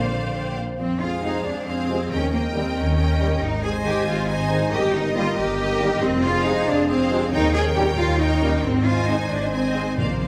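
A lush, reverberant concert-hall sound frames this heroic, adventurous cinematic passage in Eb major, moving in 6/8 at 92 BPM, where a clear, focused violin section carries the melody over a warm background violin line, rich violas, and an up-front, expressive cello section with deep double basses, while very quiet trombones and mellow French horns hold sustained chords, a ringing harp plays arpeggios, an airy flute section appears only in the first 0.8 seconds, and timpani struck with medium mallets enter at 10.0 seconds.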